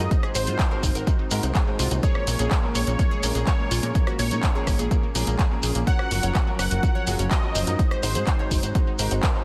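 A straight 4/4 groove anchors this expansive, emotional slice of progressive house, led by a punchy electronic kick placed up front and a layered deep house kit of handclaps, rim clicks and dark hi-hats with a small-room character. A grainy, close and dry shekere sits in the background. Beneath it, a funky sawtooth and pulse-wave bass with a fast, decaying filter pluck evolves over time and pumps with sidechain compression, while a round, detuned analog pluck spins bright, chorused arpeggios with delay further back in the mix. A concert grand piano with deep bass adds open, pumping stabs with delay. A smooth, very quiet pad holds the chords through Ab7, Bbm7 and Gbmaj7, and a catchy, mellow unison lead carries the melody with a filter sweep, ensemble chorus and delay until it stops at 8.7 seconds. The whole excerpt is dense and heavily limited, with little reverb.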